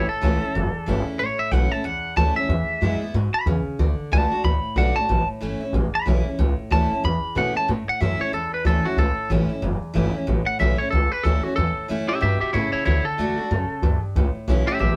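Upbeat and rollicking, this rockabilly cut swings lightly, with a twangy, bright electric guitar at the edge of break-up carrying the melody up front, its tone compressed and slightly broken-up. Beneath it, a full-bodied jumbo steel-string acoustic guitar picks out the accompaniment while a woody, thumpy upright bass with gut strings sits dark and forward in the mix. The three play live together in one room with a moderate studio reverb, moving through A, E and D over a phrase that repeats from 7.7 seconds.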